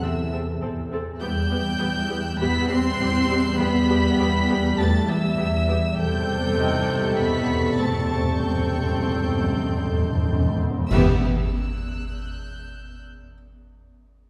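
Eerie and ominous, this suspense film score excerpt moves at 100 BPM in a straight 4/4, held over an Am7/E chord before settling on Em at 10.9 seconds. Two chamber violin sections carry the top, one warm and singing the melody high above, the other dark with a smooth top on a second line, both bowed sul tasto with soft attacks and light vibrato, while a floating, pure studio viola section accompanies from a distance. A mellow French horn section holds sustained chords in the background, and a dark chamber cello section joins a dark studio double bass section and a swarming, detuned drone with its own built-in reverb to anchor the low end. A rich studio violin section adds soft, close texture, and a very quiet, clear concert grand piano with audible action noise and long sustain drifts in at the start and again from 6.6 seconds. Timpani struck with hard mallets play a fill from 6.0 seconds, leading to an up-front accent of dark clash cymbals and concert bass drum at 10.9 seconds, all heard from further back in a wet scoring stage reverb.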